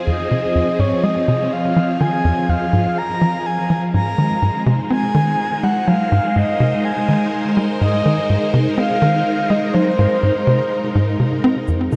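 Ambient, sequencer-driven space music at 124 BPM in a straight 4/4, this short excerpt from a longer piece feels expansive and hypnotic, moving from Fm7 to Ab at 3.9 seconds. A tight, punchy sequencer bass sits up front with a nasal sawtooth-and-square bite and a fast, decaying filter pluck, running a driving riff treated with analog chorus and delay while a filter sweep works across it until 11.7 seconds. Above it, a phased string machine holds sustained chords with a slow attack and long release, its swirling, vintage sound shaped by ensemble chorus and phaser. A breathy, flute-like synth lead carries the melody with a soft attack, vibrato, chorus and delay, its gentle tone layered with noise and a sub octave. At 11.7 seconds an overdriven electronic shaker enters in the background, sounding as if re-recorded in a small room. The whole mix sits in a vast, echoing space, drenched in a huge, wet reverb with an 8.3-second decay.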